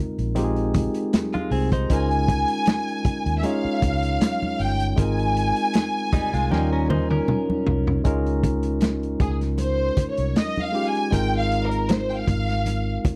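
A bowed, vibrato-rich violin section, lush with slapback echo, carries the romantic melody over a barky, lightly overdriven tine electric piano, a dark, round muted bass, a muffled vintage drum kit whose fill leads into the strings' solo at 8.1 seconds, thin-skinned congas in the background, and a clean, direct-recorded guitar riff heard from 1.3 to 8.0 seconds in this dry, close 1970s-style soul cut.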